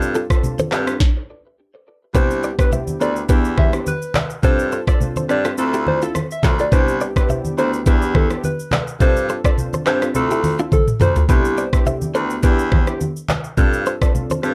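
An up-front, electronic afro-pop drum kit with a knocking kick, sharp snare, handclaps, rim clicks and shaker drives this breezy, sunny afrobeats excerpt, pausing in a stop at 1.0 seconds and adding a fill at 10.7 seconds. A clear, roomy baritone saxophone carries the bass line under detuned, evolving analog keys with chorus. A bright, compressed clean electric guitar riff with tremolo and tape echo sits among soft-handed, low-tuned congas, while a round, warbling FM synth lead sings the melody from 2.2 to 11.1 seconds over a Cmaj7, Em7, G7sus4 and Dm7 cycle.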